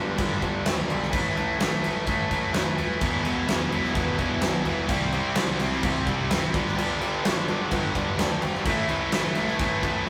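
A huge arena drum kit sits up front from 0.2 seconds, its fat snare, punchy kick and crash cymbal ringing in a big room. This dark, brooding passage of quiet-loud alternative rock moves at 128 BPM in a straight 4/4, and it is cut from a longer piece. The cranked stack guitar drives the riff from the start, overdriven, picked and prominent. A distorted electric guitar plays its own riff very quietly beneath it. A concert grand piano carries the bass line in the background, brilliant and deep. At 3.0 seconds a heavy high-gain guitar joins with a double-tracked, distorted riff set further back, over chords moving from G through A5, Esus2 and C, back to G and on to Am, all captured in a rough rehearsal-room sound with moderate reverb and warm saturation.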